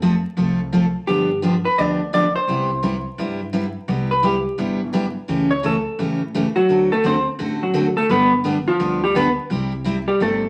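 Western swing with a country heart, this short cut from a longer piece moves at a brisk 171 BPM in 4/4 with a 63% swing on the eighth notes. Its mood is down-home and playful, in C major and tuned slightly sharp to A4 = 444 Hz. A bright, full-bodied steel-string acoustic guitar with fresh strings sits up front, picking the accompaniment from the start. Beneath it, a woody, thumpy upright bass with gut strings plays pizzicato at a lower level. At 1.1 seconds a clean, vintage hollow-body electric jazz guitar enters on the melody, also up front, and from 3.9 seconds it takes a solo that runs to the end, over chords that move from F through G7, Cmaj7, A7/C#, D7 and G before landing on C. A wet studio reverb lends some space, and a layer of vinyl crackle gives the sound an old-record patina.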